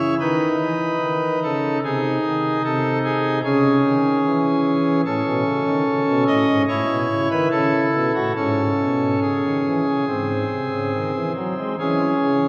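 Heard from further back in a church with a long, wet reverb of about 3.1 seconds, this grave, dark classical chorale in C# minor unfolds at a rubato 69-76 BPM in 4/4 as a solo pipe organ on a nasal cornet stop with romantic voicing, its tone set up front, spanning G#2 to D#5 through a brooding progression that passes through B13, A and G# before settling back on C#m as the fragment ends at 12.5 seconds.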